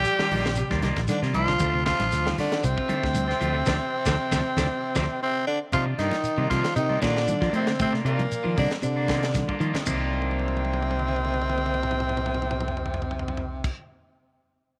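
Afrobeat excerpt at 116 BPM in C dorian, funky and defiant, where a raspy, punchy tenor saxophone carries the melody up front with vibrato while a second, growling tenor sax with a smooth top plays a lower line beneath it, over a round, dark fingered electric bass and a tight funk drum kit with a high-tuned snare. Two slightly broken-up picked electric guitars fill in, one very quiet with arpeggios until 12.2 s and one twangy with stabs, as grainy shekere, bright thin-skinned congas and very soft woody claves sit in the background. The band hits an accent from 3.7 to 5.7 s, the chords move between Cm11 and Dm7, and drum fills arrive at 5.1 s and again from 10.1 s, all in a small studio space with light reverb.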